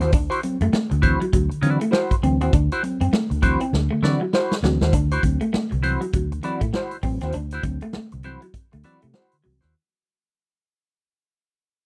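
A swung sixteenth-note funk groove struts along as a punchy, big-room acoustic drum kit with a medium-tuned snare and a dark, round, foam-muted fingered electric bass sit up front beneath a clean picked electric guitar through wah, a hollow-body semi-hollow guitar riff and mellow tine electric piano stabs in the background over a D9 chord, captured in a dry, close 1970s-style small-room sound, with a drum fill at 3.7 s before the excerpt fades out from 4.9 s.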